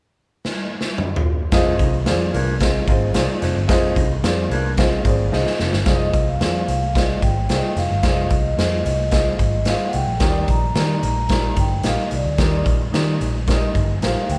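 The drums open alone with a fill at 0.4 seconds, the raw garage kit sitting up front with a punchy kick, a medium-tuned snare, hi-hat and toms, gritty and saturated in a bright, pumping stone room. This is an uptempo, joyful slice of 1960s-style soul at 110 BPM in a straight 4/4, taken from a longer piece and played by a band together in one large studio with moderate reverb. At 1.5 seconds the band arrives on an Fm7 chord: a round, foam-muted electric bass anchors the low end, a woody upright piano with short sustain fills in the accompaniment, and a dark, clean hollow-body jazz guitar with tube saturation plays a riff in the background alongside a vintage baritone saxophone with vibrato. The guitar and saxophone riff drops away after another drum fill, and from 5.9 seconds a vibraphone played with soft mallets, motor off, carries a mellow, ringing melody high above the band. The harmony shifts to Ebmaj7 at 10.2 seconds as the drums, bass, piano and vibraphone carry the uplifting groove to the end.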